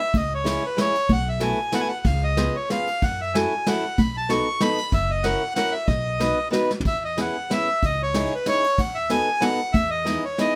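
A reedy, up-front accordion opens this charming, nostalgic musette waltz at 187 BPM in a swung, rubato 3/4, joined at once by a woody, thumpy pizzicato upright bass and a soft brush kit with punchy kick and medium-tuned snare, while a boxy, fingerpicked archtop guitar with fresh strings enters at 0.4 seconds, moving from C#m through B7sus4, F#m7 and E6 to Emaj7, with a drum fill at 6.7 seconds, all set in a moderate small-room reverb in this short cut from a longer piece.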